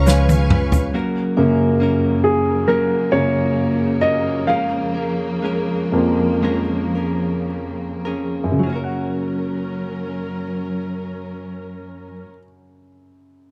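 A dry, close 1970s-style studio sound with small-room ambience frames this emotional, heartfelt pop ballad, where a soft, round synth lead with chorus and slapback echo, a lush violin section, a dark, foam-muted fingered bass, a natural country drum kit playing a fill on snare and toms, and a grainy egg shaker all drop away by 0.9 seconds, leaving a clear, polished baby grand piano to carry a slowing solo over a distant, bowed string section with expressive portamento and clean, compressed electric guitar arpeggios.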